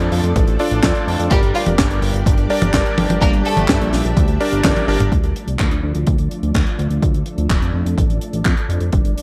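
A fat, detuned sawtooth bass sits up front in this danceable, bittersweet italo disco cut at 126 BPM in D minor, driven by a punchy electronic kick and a tight, dry funk kit of handclaps, hi-hat, high-tuned snare and toms. A lush string machine holds chords in the background over Dm and Gm, while a clangy electric grand piano with tape echo plays stabs until 5.1 seconds, where a drum fill and band accent at 4.6 seconds lead into a new section. A focused, vibrato-rich violin section carries the melody from 1.3 to 3.8 seconds, all captured in a close, 1970s-style small-room recording.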